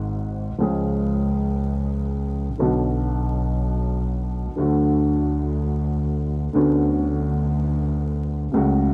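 This tango fragment moves in free time, with a passionate, dramatic mood that unfolds over just under nine seconds cut from a longer piece. A dark upright piano carries the accompaniment from start to finish, its mellow, woody tone sitting up front. Beside it, a single bowed double bass plays sul tasto in its low register, with an airy bow, soft attack and light vibrato that give it an intimate, close presence. The harmony opens on G#7 and moves through C#, Bm and D before settling on Bmadd9/D at 6.6 seconds. The sound is dry and close, in the manner of a 1970s studio session, with little reverb and a layer of vinyl crackle.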